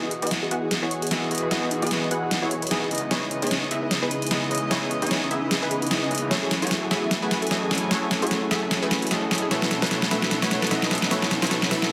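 An up-front, overdriven dubstep drum kit with a deep snare and hi-hat drives this euphoric, bright future bass build-up at 150 BPM in a swung half-time feel, playing a fill across the whole passage while a punchy, detuned supersaw stab riff sweeps through a low-pass filter with dub echo over a barely audible saturated sub bass. Behind them, a barky, gritty tine electric piano with fast tremolo and dub echo, a reedy chamber string section holding gut-string chords, and a very quiet, lush unison pluck arpeggio fill out the E major progression from Emaj9 through C#m9 and F#m9 to B9sus4. A faint riser enters at 3.0 s, and the whole mix sits in a huge ambient reverb under a dense, heavily limited master.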